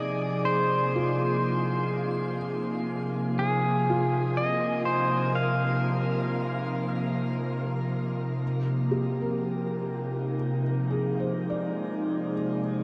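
Drenched in a dark, shimmering reverb, this spacious and reflective ambient fragment in F dorian drifts at 61 BPM in 3/4. A glassy, ethereal FM pad sits up front, holding slow-blooming chorused chords from Fm7 to Fm9. Beneath it, a felt-muted upright piano ripples through soft, intimate arpeggios with tape echo. A clean, compressed pedal steel guitar with volume swells and slide sings a tape-echoed melody until 7.4 seconds.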